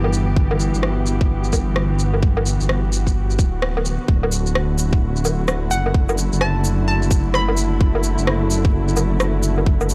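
Muted, veiled chamber strings hold sustained chords over a dark, rumbling detuned saw bass and overdriven electronic woodblock, shaker, rim click and cabasa, with strings and bass sidechain-pumping alongside the tight, up-front kick that enters at 0.4 seconds in a nocturnal, rainy future garage groove with a swung feel, before a hollow, bouncy square-wave pluck with chorus and analog delay surfaces briefly at 5.7 seconds, the whole captured as a gritty, vinyl-crackled recording cut from a longer piece.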